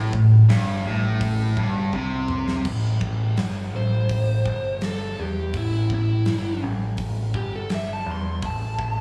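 This sounds like a live club gig heard through the venue's PA, with light club reverb and a small-room ambience around a raunchy, gritty cut from a longer blues rock and southern rock power-trio jam at 83 BPM in straight 4/4. A double-tracked, overdriven electric guitar opens up front with a picked riff on an A5 chord. Alongside it from the very start, a growling, warm picked bass, amped and overdriven, drives the low end throughout. A huge arena drum kit with a punchy kick, a medium-tuned snare, toms, hi-hat and bright crash cymbals pumps in the room, playing a fill from 1.9 seconds. The riff guitar drops out at 2.6 seconds, leaving bass and drums under an open, unchorded stretch. At 3.8 seconds a biting, picked lead guitar enters, its overdrive trailed by slapback echo as the solo takes over.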